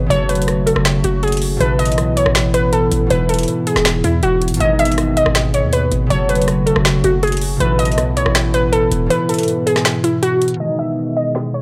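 A half-time trap groove of finger snaps, metallic hats, rim clicks and a woody snare carries this hard-hitting, dark hip hop excerpt, while a punchy, heavy 808-style bass drives underneath until the kick drops out at 9.1 seconds. Up front, a warbling, dusty lo-fi pluck with chorus and phaser sings the melody over a fingerpicked, ringing concert harp and a deep, nasal analog pad with chorus sitting in the background. The sound is dry and gritty with a hardware edge, and a filter sweep arrives at 10.6 seconds.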